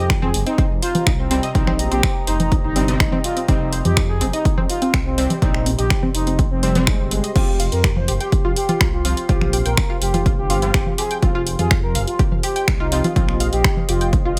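Cut from a longer piece, this driving, dramatic melodic techno passage sits in light reverb, with an overdriven, up-front electronic kick and a dry, punchy analog drum machine of congas, crash cymbal, finger snaps and hi-hat giving it weight, while sidechain pumping makes the bass, synths and the drum machine's hats, percussion and cymbals breathe around the beat. A deep, rumbling, detuned saw bass holds the low end beneath a tight sequenced synth playing arpeggios, a bright, wave-folded synth brass stab in the background, and a moody, evolving ambient pad sustaining chords with a slow attack and long release. Over them, a smooth, expressive synth lead carries the melody with vibrato, chorus and delay.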